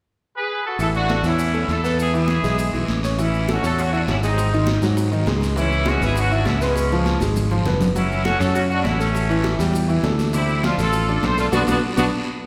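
A bright, vintage horn section carries the melody up front from 0.4 seconds in this sunny, joyful salsa excerpt, over brilliant short-sustain grand piano, a growly fingered electric bass, very quiet high-tuned congas, a raspy distant guiro and grainy background maracas, with round low-tuned bongos joining at 3.2 seconds, a drum fill at 7.1 seconds and a band accent at 11.5 seconds, all set in the long reverb of a church or concert hall.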